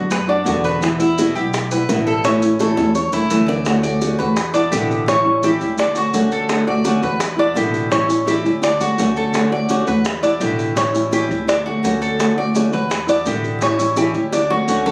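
A fingerpicked flamenco guitar with fresh strings and a metallic, double-strung Cuban tres open up front, over a woody, thumpy pizzicato upright bass, in a relaxed, sunny Cuban son and guajira clip from a longer piece at 169 BPM in 4/4, D major. Tight, high-tuned bongos sit in the background with grainy, band-limited maracas as the harmony moves from Bm, Em and A into a repeating Dmaj7–Em7–A7 cycle, with drum fills at 2.8 and 14.3 seconds. The sound is that of a phone capturing the room, with club reverb and compression.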